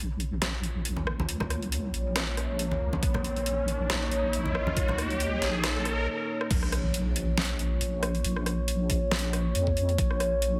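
A soft, detuned wobble bass with chorus sits up front from the start of this brooding, heavy deep dubstep excerpt, beneath a dark, moody sawtooth pad with chorus and phaser that holds one sustained chord in a half-time feel. Overdriven drums with a deep snare and bright hats build alongside acoustic congas played with hard hands and an electronic riser, while a knocking, overdriven kick joins at 3.0 seconds. After a short break and drum fill, the drop lands at 6.5 seconds with an impact, and the whole mix carries a heavily compressed, radio-like sound with moderate spring reverb.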